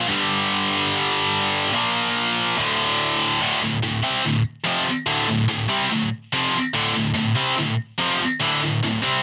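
Epic and relentless, this short metal fragment is cut from a longer piece and moves at a straight, driving pulse in four. A single heavy high-gain guitar carries it alone from start to finish, electric and picked, double-tracked and placed up front with a bright, distorted bite. Its range spans from D2 up to C4, and the distortion is colored further by the grain of cassette tape. The opening passage moves through G5, Bb5 and D5 power chords before the music shifts into a new section at 3.4 seconds, landing on D minor and pressing on until 9.2 seconds. Light reverb surrounds the part, and the whole thing carries the rough, homespun character of a home recording made on cassette.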